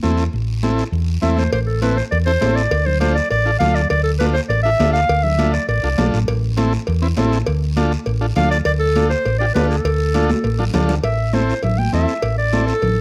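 Close, detailed microphones and a light reverb give this cumbia a present, intimate sound, and the fragment, cut from a longer piece, feels fiery and passionate from the start. A vintage combo organ with heavy vibrato and a buzzy, overdriven edge carries the accompaniment over a dark, round hollow-body electric bass that sits up front. Bright, high-tuned congas with a thin-skinned, band-limited character stay in the background, joined by a raspy, dry guiro, and at 1.5 seconds ringing metal-shell cowbell and timbales come in. A clear, classical-style clarinet carries the melody in two phrases, the harmony moving between Am and Dm beneath it. A drum fill at 10.3 seconds opens the way for a clarinet solo from 11.0 seconds to the end.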